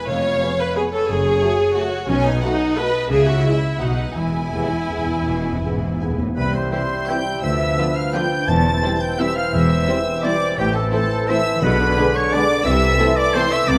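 Sweeping and festive, this orchestral ballroom waltz in 3/4 moves with a rubato lilt: a lush violin section sings the high melody with vibrato over a second violin line, an intense, up-front viola accompaniment, focused cellos, smooth double basses, the very quiet ringing arpeggios of a concert harp and warm, vintage French horn chords in the background. Timpani with hard mallets sound close and dry, with a fill from 4.1 to 6.4 seconds. At 6.4 seconds a new section begins where a clear oboe, a dark clarinet and an airy flute group add second lines, a mellow bassoon joins the accompaniment and trumpets add stabs, and from 6.7 seconds very quiet, punchy trombones sustain chords, all heard in the moderate reverb of a scoring stage in this passage cut from a longer piece.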